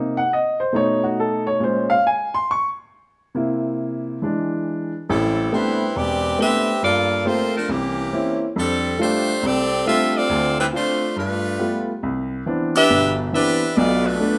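A swung 4/4 groove at 138 BPM drives this brassy, sultry jazz excerpt, opening with a clear, open baby grand piano playing alone, up front with long sustain, over a sequence of chords beginning on Cm7b5. At 5.1 s the music settles into A minor as a bright, tight saxophone section enters with the close-miked, up-front melody, while the piano carries on as accompaniment through lush extended harmonies like Am11, C7b9 and Cmaj9. A large studio reverb wraps the sound in a wet, roomy glow until the cut at 14.4 s.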